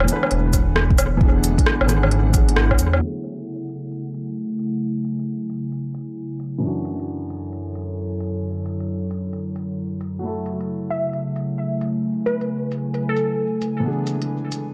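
Melancholic and wistful, this future garage excerpt at 133 BPM in F# minor sets a soft, felt-muted upright piano and a warbling, lo-fi tape-like pad, both pumping against the sidechain, over an organic electronic drum kit with smooth, overdriven hats and woodblock, while a deep, rumbling detuned saw bass and an overdriven kick drive the opening section, a reversed, dreamy texture drifts in the background, the drums and piano sit under a long filter sweep, and a glassy, crystalline wavetable pluck carries the melody from 10.9 seconds through a vinyl-crackled, echo-heavy mix moving from F#m9 to Dmaj9/F# and back toward E7.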